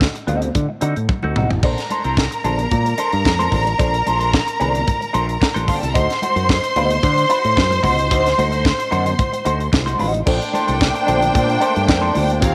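A straight 4/4 groove at 111 BPM drives this sultry, glamorous disco piece, with a tight funk drum kit and punchy, bright fingered electric bass up front, a twangy clean electric guitar colored by wah, and very quiet, ringing high-tuned congas beneath. After a drum fill, a lush bowed string section with vibrato enters at 1.6 seconds as the harmony moves between D7b9 and Bbmaj9, and a mellow, distant French horn section adds sustained chords in the background from 10.3 seconds. A moderate echo chamber reverb surrounds the mix.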